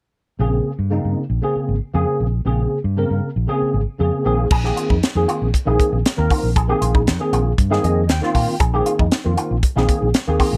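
A bright tine electric piano and a fingered electric bass open this driving, slick jazz fusion excerpt at 0.4 s, settling on a Bbm9 chord in Bb dorian at 117 BPM in a straight 4/4. The piano plays clean accompaniment through its built-in speakers with an ensemble chorus, while the amped bass sits up front with a warm tone in its low register. At 4.3 s the chord shifts to Bb9sus4, and at 4.5 s a tight funk drum kit enters, dry and polished, with a high-tuned snare, a tight kick, hi-hat and crash cymbal. An electric guitar arrives alongside the drums with short, twangy, picked stabs, shaped by an envelope filter, compression and its own chorus, and it sits lower in the mix than the other parts. Around 7.6 s the electric piano adds a brief fill, and a light reverb gives the close, up-front sound a little air.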